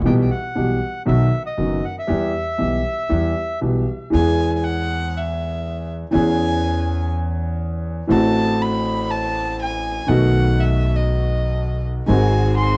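A grand piano with a deep bass and smooth, up-front tone opens this passionate, melancholic tango in 4/4 at 120 BPM, its rubato feel carried alongside a woody pizzicato upright bass on steel strings. A reedy, vintage bandoneon with a band-limited sound and tape echo carries the melody in E minor, moving through Em/B, B and Em before it falls silent at 3.6 s. At 4.1 s the music shifts into E major and a solo violin takes over as the second line, intimate and close, with light vibrato and airy bowing over the fingerboard. Beneath it the harmony travels through C#m7/E, Am6 and B7. At 12.1 s a bowed studio string section enters in the background with clear, biting stabs over a G#7 chord. The whole has the dry, close character of a 1970s-style studio recording, and this short cut from a longer piece ends there.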